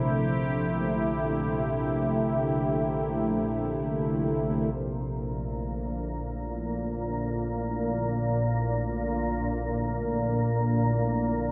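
This dark, desolate ambient drone fragment opens in free time on a calm, organ-like drone, detuned and sine-toned with a slow attack, ensemble chorus and its own reverb, sitting up front from Bb1 to C3. Above it, a sweeping resonant pad holds sustained chords between D3 and G4, its detuned sawtooth and triangle layers bright and full-bodied, shaded by ring modulation, a filter swell and chorus. For the first 1.2 seconds, barely audible gamelan-type bossed gongs add round, bronze arpeggios, close-miked and dry. The harmony moves from D7 with its third omitted to Dm7 at 4.8 seconds, where a very quiet bronze singing bowl enters on C5, played with a felt mallet and ringing with slow, metallic beating in a boxy small room. A wet spring reverb with a 2.5-second tail steeps the mix in echo, deepening the bleak, suspended atmosphere.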